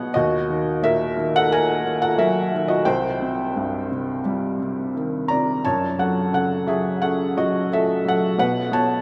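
A soft, felt-muted upright piano with audible action noise and an intimate, up-front presence plays a hopeful, sunny lyrical classical solo at a rubato 88 BPM in 4/4, moving through D#m, Cm, F#m and B5 across a range from C2 to A#5 while a long cathedral reverb places it in a vast, echoing space, in this 9-second passage cut from a longer piece.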